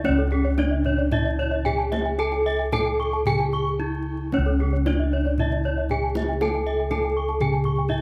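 Vinyl crackle and light reverb frame this brief, ceremonial Balinese gamelan passage in C# pelog, moving at 113 BPM in 4/4 with an uneven, brilliant pulse. A bright bronze metallophone struck with a horn mallet carries the melody, and its paired tuning gives it a shimmering beat. An airy second metallophone plays arpeggios above it, while a third, dry and close-miked with a wooden mallet, sits in the background with its own arpeggios. Round, mellow bossed gongs on padded beaters hold the bass up front, and a tight, distant kendang played with hard hands in a large room joins them. The music breaks at 3.5 seconds, and a drum fill arrives at 7.8 seconds.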